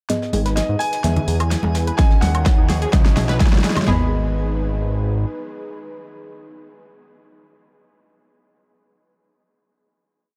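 A dark, warm digital sheen frames this dreamy, bittersweet progressive house piece in G# minor at 127 BPM. A filter-swept build with a drum fill opens at 0.1 seconds with a smooth analog pad, a deep mellow chord stab, an overdriven big-room kit's hats and backbeat and a very quiet brushed kit. A fat, nasal analog bass, a tight sequenced arpeggio synth and ringing congas and bongos arrive at 0.3 seconds, a twinkling granular shimmer at 0.4, a dark grand piano hook at 0.6 and a faint riser at 1.8. An overdriven big-room dance drum kit with its punchy four-on-the-floor kick and huge snare lands at 2.0 seconds, before the piano, pad and stabs hold a final G#m chord from 3.9 to 7.4 seconds.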